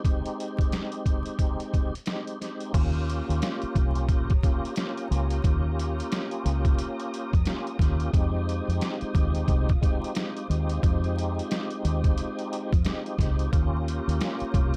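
A tonewheel organ and a sampler-style drum kit open this dark, gritty boom-bap hip-hop excerpt at 89 BPM in 4/4, the sixteenths swung and the tuning set slightly below standard. The organ carries the chords with a full, clean tone colored by chorus vibrato and a slow rotary speaker, then filtered and passed through cassette tape so it sits softly beneath the beat. The drums are compressed and pitched down, with a thumpy kick, a medium-tuned snare, hi-hat and crash, re-recorded in a small room and placed up front. At 2.7 seconds a foam-muted fingered electric bass arrives with a round, deep dub tone, joined by a lush, woody string section holding sustained chords in the background. The harmony moves from Abmaj7 to Eb7, then Fm7 at 8.1 seconds before returning to Eb7, all in a dry, dark and warm production laced with vinyl crackle.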